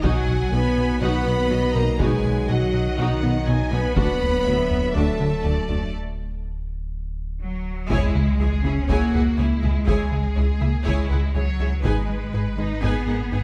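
A straight 4/4 pulse at 122 BPM drives this futuristic, vast cinematic cue, a hybrid of orchestra and electronics cut from a longer piece. A very quiet, close and dry taiko ensemble struck with heavy sticks plays alongside a rubbery, hollow square-wave bass riff in the background, while a deep, full sub bass with octave anchors the low end alongside a focused cello section and a very quiet, woody double bass section. Two distant, lush violin lines carry the melody and a second voice over smooth, vibrato-rich violas. Mellow French horns and background trombones hold sustained chords with a very quiet, punchy tuba beneath, and all three brass parts drop out by 5.9 seconds, opening a break that ends in a drum fill. The chords move from B to D, then to C#m and G#m, and a huge, dark sub drop lands at 8.0 seconds as the second section begins, set in a moderate scoring-stage reverb captured with close, detailed microphones.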